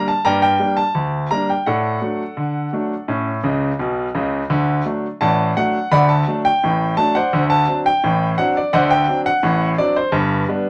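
A clear, intimate grand piano plays solo, up front with audible action noise and light reverb, in this jaunty, playful ragtime excerpt in D major at 85 BPM in a straight 2/4, spanning a low G1 to B5 and adding a fill from 3.4 to 4.5 seconds before a new section begins on a D7 chord.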